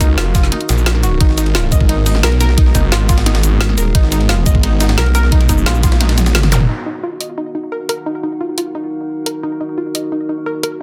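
A snarling, overdriven saw bass growls up front from the very start of this mechanical, futuristic slice of dark technical drum and bass in Eb minor at 175 BPM, its detuned unison tone bright and heavily distorted. Beneath it, an overdriven, knocking electronic kick drives a layered kit of woody snare, bright hats, cabasa and toms, while a gritty, pitched-up jungle sampler-style kit with a high-tuned snare and ride cymbal sits in the background. A round analog pluck spins arpeggios through chorus, tape echo and 12-bit sampler grit, over a deep, moody analog pad carrying sustained chords from Ebm to Abm7 and a lo-fi, warbling tape-like pad adding texture, all three pumping against the sidechain. The kick falls away at 5.9 seconds, a drum fill and band accent follow, and a brief electronic zap lands at 6.5 seconds. The bass stops at 6.7 seconds as the harmony returns to Ebm and a filter sweep moves across the arpeggio, leaving the pads, pluck and kit to carry the final stretch. 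The dense, heavily limited master keeps the sound dry, and the piece is cut from a longer work.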